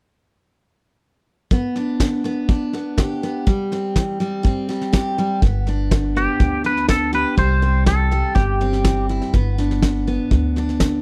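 A bright, full-bodied picked acoustic guitar and a soft brush drum kit with a fat snare and punchy kick open this sunny, nostalgic honky-tonk and classic country excerpt at 1.5 seconds, moving between G and C in a straight four-four feel. A woody, growly upright bass enters at 5.4 seconds, and from 6.2 to 9.0 seconds a clean, compressed, twangy electric guitar carries the melody through a touch of analog chorus. Every part sits up front in a dry, close 1970s-style studio sound with a little reverb.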